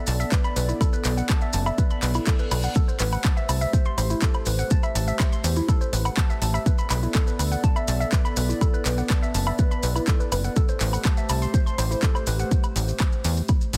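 Cinematic and dramatic, this melodic techno excerpt moves in a straight 4/4 pulse, with a punchy, overdriven electronic kick and a tight, nasal sequencer bass sitting up front under a slow shift between Bm7 and Am7. A dark, detuned analog pad holds sustained chords beneath a woody, wave-folded pluck that spins chorused, delayed arpeggios, and both of these parts pump with the sidechain. An overdriven house kit adds handclaps, bright hi-hats and woodblock, grainy close-miked maracas add texture, and a faint reverse cymbal enters in the background at 2.1 s, all in a dry, dense and heavily limited mix.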